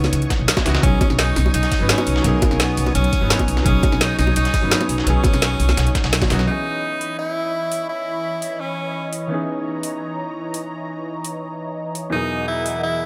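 Lush and dreamy, this liquid drum and bass cut from a longer piece moves at 170 BPM in a straight 4/4, set in C# dorian over chords like C#m9, B69 and Emaj9#11. An edgy, forceful tenor saxophone carries the melody in a jazz style with scooped notes and tape echo, pausing after 9.1 seconds and returning briefly at 12.1 seconds. A clear grand piano with its own tape echo accompanies throughout, while a thick, airy sawtooth pad, detuned with a noise layer and slow attack, holds sustained chords through chorus, phaser and sidechain pumping. The opening drop runs to 6.5 seconds with a band accent at 6.1, driven by a knocking, overdriven electronic kick, a woody pizzicato upright bass up front with tube saturation, round low-tuned bongos struck with hard hands, and a gritty sampler-style kit in the background with filtered hats and snare. Playing alongside them from the start, the overdriven garage kit with its woody snare and metallic hats carries the groove on past the drop until 12.7 seconds, all sitting in light reverb and small room ambience.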